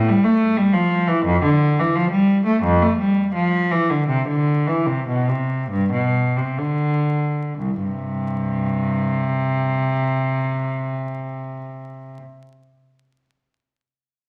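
The rhythm is a free, rubato 4/4 that ranges between 58 and 93 BPM, and the playing slows through the first 7.6 seconds before a new passage takes over until 11.4 seconds. This is a short section of a classical, baroque-style suite movement in C major for unaccompanied cello, with a flowing, radiant mood and tuning set to A4 = 442 Hz. A single bowed cello plays alone from 0.0 to 12.2 seconds, ranging from C2 to A3. Its rich, reedy gut-string tone carries light vibrato and a period-style manner, and it sits up front. The sound is set in a moderate recital hall with a reverb time of 1.4 seconds, and a vinyl crackle runs beneath it.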